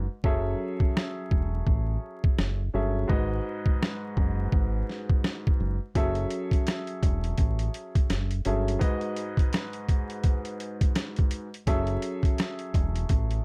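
Gritty and dark, this boom-bap hip-hop excerpt swings over a dry bed of vinyl crackle, with a compressed, pitched-down sampler drum kit bringing a thumpy kick, medium-tuned snare, rim click and hi-hat up front from 0.2 seconds, a round, deep electric bass sitting just as forward, and a worn baby grand piano, filtered and long-sustaining, moving between F#m7 and G#m7 chords.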